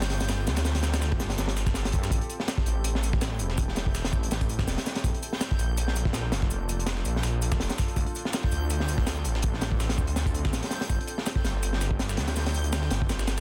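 Atmospheric and nostalgic, this drum and bass excerpt moves at 164 BPM with a swung jungle feel, built on a crunchy, dark breakbeat kit with a punchy kick and high-tuned snare up front, layered with a compressed, sampler-style kit carrying hi-hat, shaker and snare through high-pass filtering. A thick, menacing detuned saw bass with tube saturation beats beneath, while a mellow, warbling tape-like pad with chorus and lo-fi sampler grit and a dreamy, reversed granular texture sit in the background. The chords cycle from G9sus4 through Am7, Bbmaj7 and Dm7 back to G9sus4, and the kick drops out at 13.1 seconds in a dense, heavily limited master.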